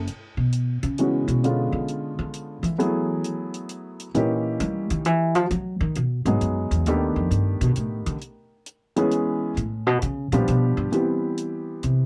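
Relaxed and warm, this jazz piano trio fragment swings in 3/4 at 133 BPM, with the upright bass taking a woody, pizzicato solo up front from 0.1 seconds over a dry, natural hi-hat. The baby grand piano enters at 1.0 seconds with an intimate, short-sustained melody, its action noise audible, as the harmony moves from E6/9 through rich altered and minor chords to a Cmaj7. A small room reverb gives the trio a close, natural setting.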